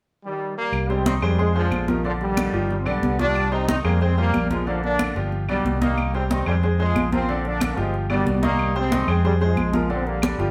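Salsa in C minor at a brisk 183 BPM in straight 4/4, this fiery, driving cut from a longer piece opens with a brilliant, close-miked trombone section carrying the melody from 0.2 seconds, its pop-style ensemble sound touched with light vibrato and placed up front. At 0.7 seconds the band joins: a round, amped fingered electric bass sits forward in the mix, ringing, high-tuned congas struck with hard hands sound close and dry, and woody, vintage claves stay in the background with a band-limited tone. A bright grand piano with an open, short-sustained tone follows at 0.9 seconds. The harmony cycles through Cm, Fm, Bb and G7, keeping the momentum tense and insistent. The group plays live together in a stone room whose reverb lends the whole performance a lively, resonant space.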